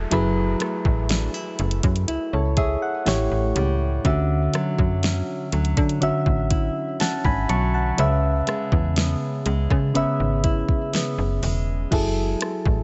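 A snappy, metallic FM bass with a slap-like bite sits up front in this slow, late-night contemporary R&B passage, cut from a longer piece and carrying a mood of longing in a straight 4/4 feel. Beside it, soft electric-piano-like synth keys with a round, dark tone and a chorus effect play the accompaniment, moving through F#m9, A7, Dmaj9 and C#m7 before returning to F#m9. A fingerpicked nylon-string guitar adds classical-style arpeggios with a delay effect and audible finger squeak, ending at 12.5 seconds. A produced electronic drum kit enters at 0.1 seconds with a soft kick, fat snare, rim click, hats and crash cymbal, while a very quiet electronic downlifter lingers under the opening 4.0 seconds. The whole passage rests in a digital ambience with a muted top end.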